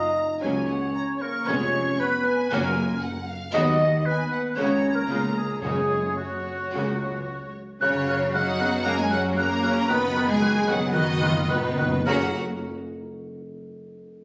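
A quick, graceful classical-period orchestral movement in F# major, lively yet rubato at around 102-119 BPM, where a rich, smooth studio violin section carries the melody over second lines from a symphonic violin section, clear oboe, dark, roomy clarinet and pure, crisply attacked concert flute. Mellow French horns sustain chords while focused violas fill in the accompaniment, and clear cellos with lush double basses anchor the bass; the second violins, violas, cellos and basses enter at 0.4 s and a bassoon joins at 7.8 s. Hard-mallet timpani, close and dry, punctuate the opening and return with a fill from 9.9 s, all heard through moderate scoring-stage reverb with a phone-captured, compressed club-room ambience in this fragment of a longer piece.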